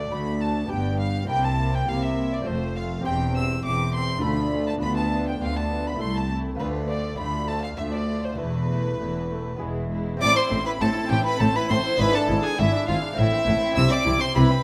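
In a straight 3/4 at 101 BPM, this stormy, dramatic baroque-style concerto movement in A minor sets an up-front solo violin with a reedy gut-string tone and light vibrato over a period-style chamber string band. A violin section doubles the melody in the background while a rich, smooth-topped second violin section carries a second line, distant dark violas and a delicate fingerpicked lute with double strings supply accompaniment, and a nasal cello section and a rich double bass section anchor the bass. The harmony drives through a descending sequence to an E chord at 9.6 s before settling into Am at 10.2 s, all in a moderate recital hall reverb.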